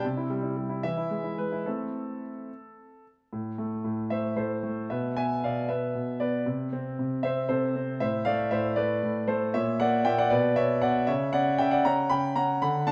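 A solo concert grand piano opens this short classical-period sonatina fragment, its clear tone sitting up front with a deep bass and long sustain across a range from A2 to B5. The piece is in A minor and 6/8, moving at about 77 beats per minute counted in dotted quarters, with a rubato feel that lends a restless, dramatic mood. A brief opening phrase passes from C through E to A minor before a longer second passage begins at 3.3 s. That passage returns to A minor and then reaches a tense F#7b9b13 over A# near 9.5 s, moving through B minor toward a bare F#5 over C#. A reverberant recital hall surrounds the instrument, and the production leans dark, with tuning set slightly high at A4 = 441 Hz, before the excerpt breaks off at 12.9 s.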